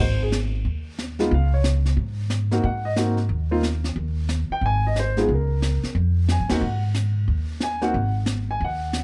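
Relaxed and sophisticated, this brief jazz piano trio cut swings at 181 BPM in Ab mixolydian, with an intimate, up-front grand piano carrying the melody over its audible action noise and long sustain, a woody pizzicato upright bass holding the low end, and a brush kit with dark cymbals and a high-tuned snare joining at 0.3 s, all set in light reverb and a dark, warm production, with a band accent landing at 6.5 seconds.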